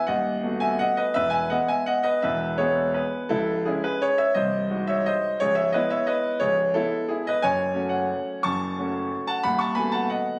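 A clear concert grand piano carries this short classical waltz alone, its sound open and up front with a deep bass reaching down to B#0 and a top reaching C#6. The mood is elegant and sparkling, set in a triple metre with a flexible, rubato feel. The harmony moves from B7/D# to E, then through C#m, G#7/B#, C#m7 and F#m before returning to B7/D# near 9.4 seconds. The recording captures the instrument in a recital hall with a wet reverb tail, taken on a phone in the room, which lends the sound a club-like ambience. Lasting just over 10 seconds, this fragment is cut from a longer piece.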